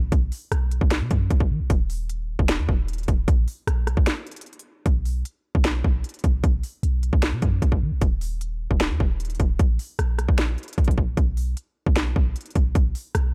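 A deep, boomy 808-style bass opens this eerie, hard-hitting trap excerpt, its clean sine tone striking with a fast attack and decaying into a dark low end. An up-front electronic drum kit joins almost at once in a half-time feel, pairing a hard-clipped kick and sharp snare with crisp hi-hats, rim clicks and finger snaps, all carrying a tape-warm, produced edge. A short break around 4.1 seconds leads into a new section at 4.9 seconds, and the whole cut sits in a digital ambience.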